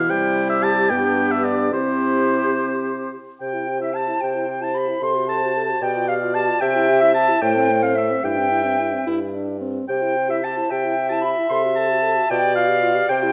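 A spirited, graceful classical-period movement for wind quintet opens with all five players together in C major, moving in 6/8 at 74 BPM in dotted quarters: an airy, crisp-edged flute with vibrato sings the melody over a punchy oboe second line, while a present clarinet and a warm French horn fill the accompaniment and a mellow bassoon anchors the bass, all set in a moderate recital-hall reverb in this passage cut from a longer piece.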